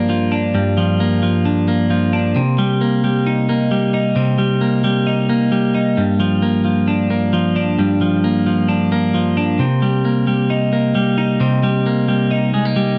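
Indie pop at 133 BPM in C minor, this restless, bittersweet 13-second excerpt cut from a longer piece features a lone twelve-string electric guitar, bright, twangy and compressed, picked cleanly and up front in a dry, close 1970s-style studio sound as it moves between Gm7 and Cm7.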